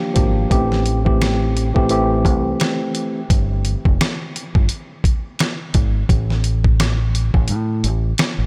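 Dark and tough, this boom-bap hip-hop excerpt sits at 86 BPM with a swung 16th-note feel, opening on a worn, slightly out-of-tune tine electric piano that plays clean through its built-in speakers over Gm7 and Am7 chords until 3.2 s. A deep, round fingered electric bass and a gritty, compressed, sampler-style drum kit with a thumpy kick, fat snare, rim click and hi-hat sit up front beneath a light digital reverb, carrying the groove through a rootless Fmadd9 before the harmony drops out at 6.1 s. A short break arrives at 7.5 s as the cut ends.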